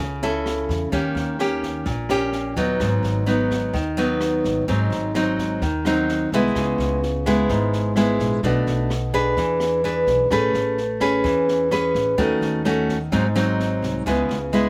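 A straight 4/4 bossa nova groove at 128 BPM carries this romantic, sophisticated passage from a longer piece, with an open jazz kit entering at 0.2 s on a boomy kick, rim click and a high-tuned snare. Up front, a bright, fingerpicked nylon-string guitar with classical character and audible finger squeak works through rich minor-seventh and dominant harmony, moving from F#m7 through G#7 and an Amaj9 before settling on C#m7. Beneath it, a woody, dark pizzicato upright bass adds low support, all captured dry with little reverb.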